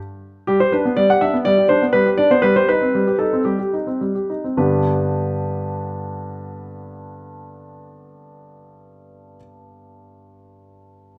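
A warm concert grand piano carries this short, playful and graceful piece, a classical-period sonatina in G major cut from a longer work. Playing solo from 0.5 to 11.2 seconds, it spans G2 to F#5, with a deep bass and a natural, up-front presence. The tempo moves freely between 101 and 126 BPM in 4/4 with a rubato feel, slowing down through the first 4.6 seconds. The harmony rests on G, shifts to C minor over a G bass at 2.4 seconds, and returns to G as a new section begins at 4.6 seconds. Close, detailed microphones capture the instrument within a moderate recital hall reverb that lends the sound a gentle sense of space.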